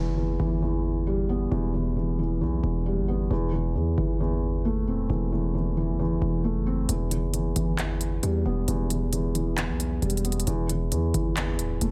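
A dry, close-sounding cut from a longer menacing, brooding half-time trap hip hop piece at 134 BPM in E minor, where a dark felt-muted upright piano with audible action noise and a heavy, distorted 808-style bass with a noisy edge sit up front over Em and Am chords, and a crisp electronic trap drum kit of handclaps and hi-hats joins at 6.9 s.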